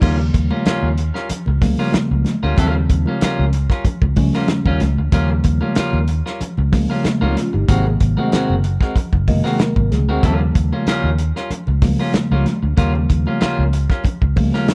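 A straight 4/4 funk groove drives this energetic, gritty excerpt, built on a soul drum kit with a fat snare, tight kick and dark cymbals in a pumping room, and a round, foam-muted fingered bass sitting up front. A clean, picked electric guitar with spring reverb plays accompaniment under mellow tine electric piano stabs, and the piano breaks into a short fill from 9.0 to 10.2 seconds. High-tuned, thick-skinned congas played with soft hands sit in the background of an otherwise dry mix.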